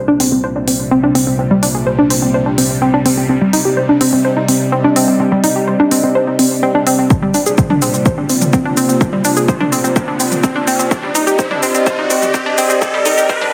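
A straight 4/4 pulse at 126 BPM drives this hypnotic, dark melodic techno build-up in C minor, where a round, chorused analog pluck arpeggio sits up front under a filter sweep, a deep, detuned analog pad holds moody Bb/C and Cmadd9 chords through its own sweep and sidechain pumping, a tense, string-like bowed-like drone shimmers with phaser and vibrato, an overdriven techno kit lays down smooth hats, shaker and toms, a heavy layered kick punches in at 7.1 seconds, and a background riser climbs from 9.1 seconds, all within a lush hall reverb and a dense, heavily limited master.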